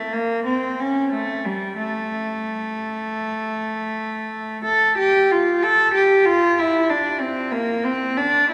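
A baroque-style classical suite movement for unaccompanied cello, this brief 8.5-second passage cut from a longer piece feels solemn and introspective, moving in 12/8 with free, rubato phrasing. A single bowed cello in period style carries the line, its nasal, reedy gut-string tone sitting up front. A long, wet church reverb of 3.6 seconds lets each phrase bloom and hang in the space.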